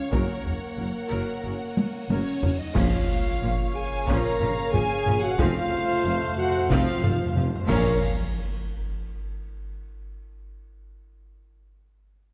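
A moderate scoring-stage reverb surrounds this dark, dramatic cut from an epic orchestral film score in Bb minor at 91 BPM. Compressed, saturated taiko hit with hard sticks alongside bright clash cymbals, cymbal swells and concert bass drum, and a very quiet, huge cymbal swell and sub drop effect enters at 1.8 seconds. Lush bowed violin sections carry a vibrato melody and a background second line over sombre French horn chords, smooth viola accompaniment, very quiet soft-attack trombones, and a bass of clear cellos, distant double basses and a mellow tuba, moving from Gb through Bbm and F. An airy silver flute joins at 2.1 seconds, and at 2.8 seconds a solo trumpet adds stabs while close, dry calf-head timpani enter in the background, with impacts and band accents marking the turns.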